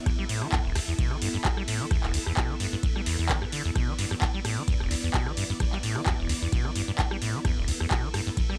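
A 130 BPM 4/4 groove with a light 16th-note swing drives this raw, trippy acid house excerpt in E minor pentatonic over an E5 chord, where a deep, tape-warm analog kick and a booming, up-front drum machine with metallic hats, handclaps, ride and rim clicks carry a squelchy, resonant sawtooth acid bass riff with a filter sweep, subtle chorus, tape echo and sidechain pumping, beneath lush, soft-attack string machine chords that also pump and shimmer with ensemble chorus, in a dry, gritty hardware sound.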